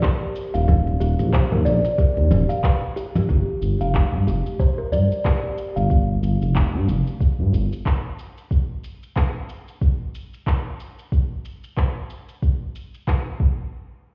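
A smooth, gliding synth bass sits up front in this meditative organic downtempo piece in G minor. Its sawtooth-and-triangle tone is wave-folded and sustained, with vibrato, portamento and sidechain pumping, ranging from Eb1 to G2. A woody, dark kalimba plucks short arpeggios between G4 and F5 through vintage 12-bit sampler grit, a low-pass filter and digital delay; a filter sweep arrives at 3.3 seconds, and the kalimba stops at 5.9 seconds. A soft electronic kick, placed up front, and an organic electronic kit of congas, handclaps, crisp hi-hat and shaker carry a 92 BPM groove in 4/4 with 57% swing on the sixteenths, both re-recorded in a small room. The harmony rests on Eb before shifting to a G7 chord with its third omitted, and from 8.5 seconds the chords drop away while the drums continue. The mix sounds muffled, as if heard through a wall, and is wrapped in light stone-room reverb and digital ambience.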